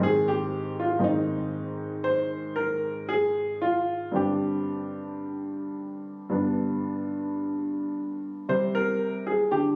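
A bright, brilliant baby grand piano plays alone and up front with short sustain, shaping a solemn, flowing baroque-style suite movement in slow 4/4 with rubato, its chords moving from Ab through Gsus4 to G before settling on a C5 at 8.5 seconds, all heard through moderate recital hall reverb in a compressed phone recording of a room with club ambience, cut from a longer piece.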